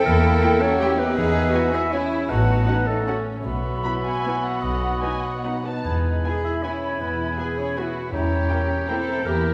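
Muted violins carry the melody of this sweeping, elegant orchestral ballroom waltz in 3/4, their veiled, con sordino tone sitting high with light vibrato and a smooth top, while a second, lush violin section plays a background line. Clear oboe, hollow flute and a warm clarinet add second lines, the clarinet and oboe each in a classical solo style, and a mellow, distant French horn section holds sustained chords beneath. Dark, muted cellos and double basses with vibrato anchor the bass, a very quiet viola section adds accompaniment, and a ringing, fingerpicked concert harp spreads arpeggios across a broad range in the background. Soft-mallet timpani with a round sound enter at 5.9 seconds on a single low note. The rubato feel and a wet recital hall reverb give the ensemble a sense of space in this short cut from a longer piece, with a diminished chord framing its opening and close.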